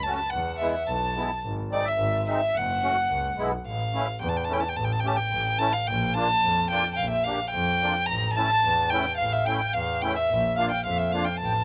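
Klezmer at 108 BPM in 2/4 with a straight feel, this short excerpt cut from a longer piece carries a soulful, bittersweet mood, settling into A phrygian dominant from 3.7 s with chords moving between A and Bb. A rich, nasal violin with vibrato takes the melody up front, its bowed line smooth and even, touched by a slapback echo. A reedy accordion with slow beating supplies a second line in the background, sounding close-miked and dry, dropping out after 3.3 s and returning at 8.1 s. Beneath them, a musette accordion with shimmering, airy musette tuning plays the accompaniment, while a clear, distant double bass, bowed with vibrato, holds the low end. The whole was recorded outdoors with little reverb, giving the ensemble an open-air presence.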